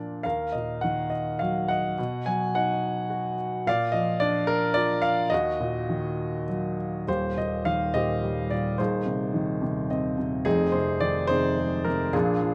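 A warm, woody upright piano carries this short classical passage alone, its intimate, up-front sound catching the audible noise of the action along with a long, polished sustain. The mood is cool and brooding, set in 3/4 at 106 BPM and played with a rubato feel that lets the lyrical line breathe. The opening stays in E-flat minor, moving through Ebm, B and Bb before returning to Ebm. At 7.1 seconds the music brightens into E-flat major with an Eb6 chord, then passes through Ab/Eb, and the piano adds a brief fill before settling on Fm7 at 10.5 seconds. Close, detailed microphones and light reverb keep the instrument present and close, and the recording is cut from a longer piece.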